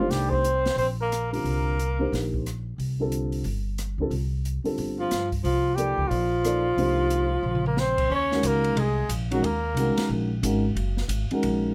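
A bucket-muted trumpet and a bright tenor saxophone open this searching, hypnotic modal jazz excerpt together, over a dark upright piano, pizzicato upright bass and an acoustic drum kit that joins a moment later. The trumpet carries the melody with a veiled, mellow tone, soft attack and vibrato, sitting up front, while the saxophone traces a second line below it with its own vibrato. The horns drop out at 2.3 seconds, leaving the boxy, long-sustaining piano, the woody, thumpy gut-string bass and the airy, small-room drums with their dark cymbals and boomy kick to hold the suspended harmony. At 5.0 seconds the horns return, and after a drum fill the music moves into a new section at 8.1 seconds, settling on a minor seventh chord. A swinging feel and light reverb give the performance a polished sound.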